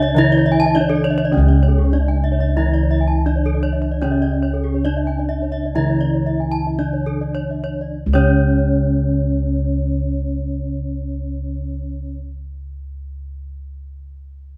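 Balinese gamelan in C# pelog, shimmering and brilliant, cut from a longer piece, with a tempo that ranges from 104 down to 48 BPM as it slows from 1.3 to 7.9 seconds before a new section opens at 7.9 seconds. Bronze metallophones carry the melody and a low accompaniment while two more weave arpeggios above, their ringing tones struck with horn or wooden mallets and paired tuning that creates beating shimmer. Bossed gongs sit up front with a round, bright bass, and the band plays live in one room with a reverberant stone ambience.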